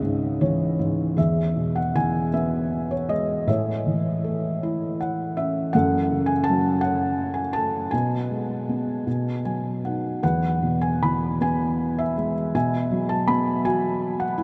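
A felt-muted upright piano opens alone with a short fill, its thick felt giving a soft, dark tone and its action noise audible up front in the mix. This is lyrical solo classical piano in E major, melancholic and wistful, moving in a slow 6/8 at 53 BPM counted in dotted quarters, with uneven beats and free rubato. At 1.2 seconds the main passage begins, and the harmony moves from C#m through E, A, F#m and G#m/B to B before settling on E and a closing Bsus4. Brief fills return at 4.6 and 9.1 seconds, keeping the intimate, mellow feel. A huge, wet ambient reverb places the piano in a vast, echoing space, and the piece, cut from a longer work, runs to 14.4 seconds.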